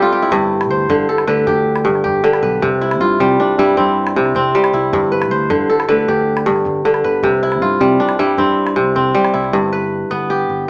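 West African traditional string and xylophone music in a flowing, hypnotic 12/8 feel, cut from a longer piece. A bright, ringing kora, fingerpicked and crisp up front, opens with a short fill before spinning arpeggios over a punchy, growly picked electric bass and a small, dry calabash tucked in the background, which stops at 9.5 seconds as the harmony moves between G and C. The band plays live in one room with moderate studio reverb, giving a small-speaker sound.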